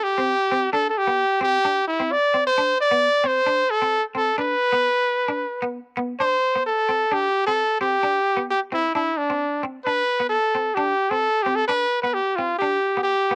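A straight 4/4 pulse at 132 BPM drives this sunny, danceable highlife excerpt, cut from a longer piece and tuned to A4 = 437 Hz over a B minor chord. A brilliant trumpet carries the melody up front from the opening moment, playing solo in a pop style between D4 and D5 with vibrato and scooped notes. At 0.2 s a clean electric guitar joins as accompaniment, picked with a bright tone between B3 and D4 and coloured by a lush chorus, sitting well beneath the trumpet in the mix. The passage moves into a new section at 6.2 s, and both parts carry on through to the end. The sound is that of a home cassette recording in a booth with moderate ambience, giving each part a tape-worn character.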